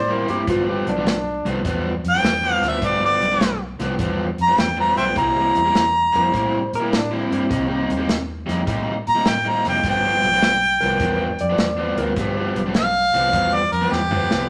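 Soulful and gritty, this swung electric blues shuffle excerpt is led by an up-front, overdriven harmonica with light vibrato, scooped notes and tongue slaps, over a bright, picked semi-hollow guitar riff, a dark, round, foam-muted vintage bass and an airy, polished country drum kit with a punchy kick, while a clean, compressed lap steel adds slide lines with volume swells briefly at the start and again from 6.2 to 12.7 seconds, before a drum fill at 13.9 seconds rounds off the moderately reverberant passage.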